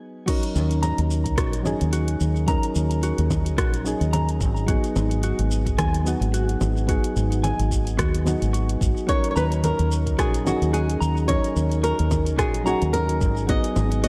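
A swung 109 BPM groove in 4/4 drives this smooth, wistful sunset chillout piece, cut from a longer track: a deep electronic kick and a layered deep house kit of congas, shaker, hi-hat, rim click and crash cymbal settle under a warm, up-front fingered electric bass. Soft, warbling electric-piano-like synth keys with chorus and shimmer reverb open alone at 0.0 s, then a dark, compressed electric guitar at the edge of break-up spins delayed arpeggios over slow alternations of D#m7 and G#m7. At 9.1 s a dark, fingerpicked flamenco guitar steps forward with the melody, its delay and shimmer adding glow to the dusky, gently ambient mix.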